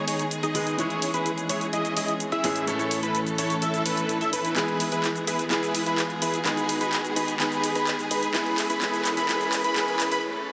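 Up-front, layered big-room drums with handclaps, hi-hat and shaker drive this uplifting, triumphant festival progressive house build-up, rolling into a fill at 4.6 seconds before breaking at 10.2 seconds, while a huge, detuned supersaw riff with a low-pass filter and delay, a thick, dark unison lead playing delayed arpeggios, a brilliant grand piano with delay, a warm, intimate string section holding sustained chords in the background and a very quiet riser entering at 1.0 second all sit in a long ambient reverb under a dense, heavily limited master.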